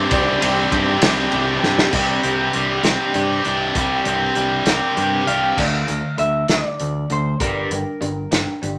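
A bright, scooped high-gain guitar sits up front with a distorted riff, driving this moody, bittersweet indie rock passage in 6/8 until it drops out at 5.6 seconds. Beneath it, a crunchy overdriven guitar with a phaser plays its own picked riff throughout, while a direct, picked electric bass holds down the low end. A lo-fi electric guitar, fingered through a small old amp with a slightly broken-up, compressed tone, carries the melody in two passages. A loose, acoustic drum kit with a punchy kick and a rolled-off top plays throughout and rolls into a fill at 1.6 seconds, joined early on by a faint, distant tambourine. A very quiet, lush bowed string section adds soft sul tasto chords with gentle vibrato over the opening Csus2 until 1.9 seconds, and the harmony later moves to Dm and then Gm, all within a wet studio reverb.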